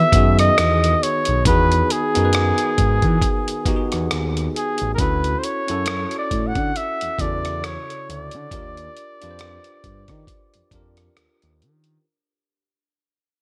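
A clear flugelhorn leads this relaxed, soulful neo-soul and R&B excerpt, carrying the solo melody up front with vibrato and scooped notes in a pop style. Beneath it, a bell-like tine electric piano plays clean, direct accompaniment, while a smooth, mellow synth bass built from sawtooth and triangle tones glides between notes with portamento, vibrato and a moving notch. A dusty, sampler-style drum kit arrives at 0.1 seconds, its compressed, gritty hi-hat, rim click and thumpy kick sitting up front with gated reverb on a gently swung sixteenth-note feel. The harmony moves from Emaj9 to Dmaj9 at 5.0 seconds, then to D#maj9 at 8.5 seconds. The whole passage fades out across its length, framed by light reverb and a bright 1980s-style digital production, and the flugelhorn stops at 11.2 seconds, just before the other parts.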